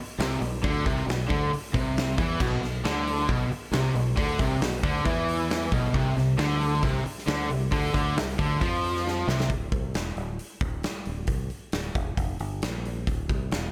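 A light reverb and small room ambience frame this menacing, driving hard rock cut, taken from a longer piece. Two double-tracked, overdriven electric guitars play a picked riff together in a low register: one crunchy and warm, the other brighter and sitting up front. Underneath, a fingered electric bass with a direct, growly tone holds down the low end, while a huge acoustic drum kit with a punchy kick, medium-tuned snare, hi-hat and crash cymbal rings with natural big-room character. A drum fill leads to the 9.5-second mark, where both guitars drop out. Bass and drums carry the final stretch on their own through to the close.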